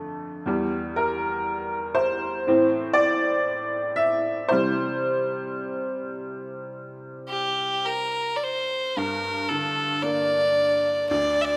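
Haunting and mournful, this rubato Celtic slow air, cut from a longer piece, opens with a bright, worn, slightly detuned upright piano playing alone up front through chords of Edim, Am and C until a clear, biting fiddle with light vibrato and a smooth top enters at 7.3 seconds to carry an intense bowed melody over the C chord and on into Gm, both set in a moderate recital hall reverb.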